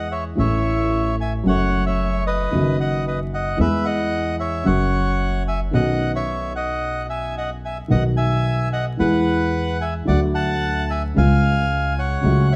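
Vinyl crackle and light reverb frame this melancholic, passionate tango fragment, which moves at a rubato 111 BPM in 4/4 and is tuned to A4 = 441 Hz. A reedy, up-front bandoneon sings the melody in a boxy small room over a dark, intimate baby grand piano whose action noise is audible, while a woody, thumpy pizzicato upright bass on gut strings anchors the low end. The harmony drifts from A through F#m, E and Badd9 before settling on D and a closing C#7.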